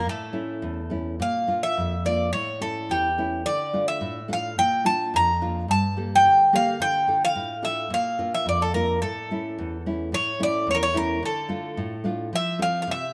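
In a straight 2/4 pulse that gradually speeds up, this brooding, moody Greek folk fragment sets a bright, metallic bouzouki with double strings and some octave-doubled strings up front on the melody, over a full-bodied, fingerpicked nylon-string guitar accompaniment with audible finger squeak, both bathed in a moderate plate reverb as the music shifts into a new section at 10.1 seconds.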